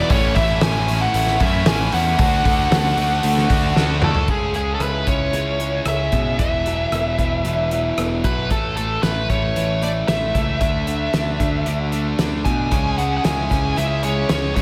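A straight 4/4 pulse drives this cathartic, restless slice of quiet-loud alternative rock, with a loose indie drum kit up front, its fat snare and boomy kick sitting in a pumping studio room. A growling, overdriven picked bass, direct and amped, anchors a cycle of A, D, C#m and Esus2, while a nasal lead guitar with a parked wah carries the overdriven melody on top, coloured by slapback echo and digital delay. In the opening section, two bright, distorted electric guitars and a crunchy overdriven guitar churn out riffs in the background with slapback echo, and a drum fill closes the section just before 4.3 seconds. From 4.3 seconds a boxy parlour steel-string acoustic guitar enters with picked arpeggios, one distorted guitar keeps its riff going, and the crunchy guitar returns at 12.7 seconds. The mix has a big arena sound, with moderate concert hall reverb over small room ambience.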